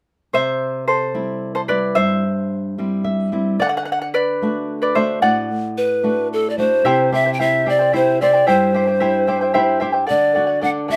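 Andean folk at 74 BPM in a straight 6/8, festive yet wistful, opens with a bright, shimmering, fingerpicked charango carrying a featured solo over fingerpicked flamenco guitar whose finger squeaks come through, the guitar slipping in a brief fill at 2.8 seconds, before a close-miked, airy bamboo pan flute with chiff and vibrato takes up the melody at 5.8 seconds, all within a moderate studio reverb.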